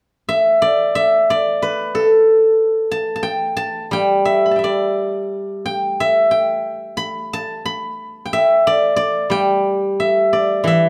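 Flowing and pastoral, this short passage of Chinese traditional music features a solo steel-string zither, played with fingerpicks, in G gong mode at around 89 BPM in 2/4 with a loose, rubato feel. The zither enters at 0.3 seconds and sounds until 10.9 seconds, ranging from E3 to B5 with a silvery, ringing tone that stays mellow and up front. Close, detailed miking and light reverb capture the instrument's acoustic character in this excerpt from a longer piece.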